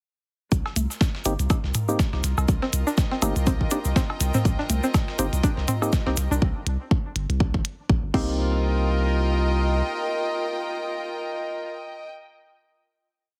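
Minimal techno at 122 BPM in C minor, cool and clinical, built on a swung four-on-the-floor kick that sits punchy and up front with a tape-warm, room-recorded weight. A deep, sine-based sub bass rolls a staccato groove beneath it, saturated and pumping against the kick, while a clicky programmed kit adds closed hats, backbeat and crash, and a gritty sampler-style breakbeat with a fat, filtered snare runs alongside until about 6.3 seconds. A bright, dry egg shaker plays hand-played sixteenths, and analog-flavoured cowbell, high conga and low tom blip in cross rhythm through a digital delay. Above, a twangy, string-like resonator pluck with 12-bit grit and dub echo loops a 7-step sequence that drifts against the bar, and hollow, dark organ stabs drop sparse echoing chords in one parallel shape. A rich, distant chamber string section with light vibrato fades in over the groove, slowly shifting chords around Cm7, and it carries the final chord from 8.4 to 12.1 seconds alongside the last organ stabs. 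The whole mix has a heavily compressed, radio-like sound with light reverb.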